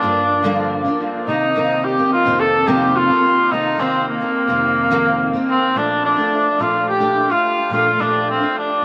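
A straight 4/4 pulse carries this hazy, nostalgic indie pop excerpt: a warm, soft-attacked cor anglais with light vibrato and a smooth top sings the classical-style solo melody up front through lush chorus and dub echo, while a picked steel-string acoustic guitar, finger squeaks and auditorium presence intact, sits equally close and accompanies with ensemble chorus, a vibrato effect and its own dub echo, the echo-heavy mix steeped in moderate spring reverb as the harmony moves from Gm7 and F7sus4 to Bbmaj7 at 5.8 s.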